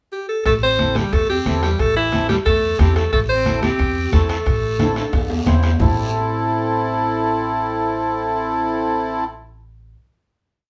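A clear alto saxophone leads this short, fiery cumbia in A minor, playing a motif-based melody in period phrases with vibrato in a pop style, up front from a pickup at 0.1 seconds. A bright clarinet follows at 0.5 seconds with a jazz-style harmony line, mostly in sixths, using light vibrato and subtone. A reedy, sweet accordion with a vintage, band-limited character and light tremolo tuning adds rhythmic triad chords, holding on through the final chord alongside the woody pizzicato upright bass, which plays a cumbia bass figure on steel strings. At a driving 180 BPM in straight 4/4, the percussion builds the groove: low-tuned congas with hard hands on the off-beats, a soft-beater bombo sitting close and dry in the background, a raspy guiro scraping long and short strokes, and ringing metal-shell timbales and bell placed distant in a large room. The band plays live in one room with a wet studio reverb, and after a drum fill from 4.8 seconds the piece settles on a final chord from 5.8 seconds.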